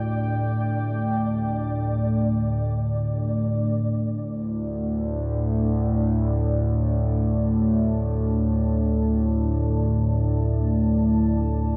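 Dark and desolate, this free-time dark ambient drone excerpt sets a warbling, detuned pad of sustained chords over an evolving, wave-folded analog drone with chorus, both up front, while a flickering, grainy granular texture hovers in the background until 3.9 seconds, all bathed in a wet echo-chamber reverb.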